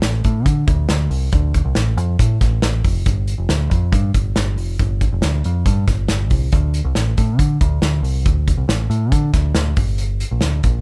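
A rough, dry home-demo sound opens this short cut from a longer jangly indie pop piece, bittersweet and wistful in mood with a straight feel. A deep, dark, round picked electric bass sits up front, heard both direct and amped. Beside it, a loose acoustic drum kit plays hi-hat, a tight kick and a medium-tuned snare in a small, pumping room, and it also sits up front. Both parts start together, with the drums running to about 10.7 seconds and the bass to about 10.8 seconds.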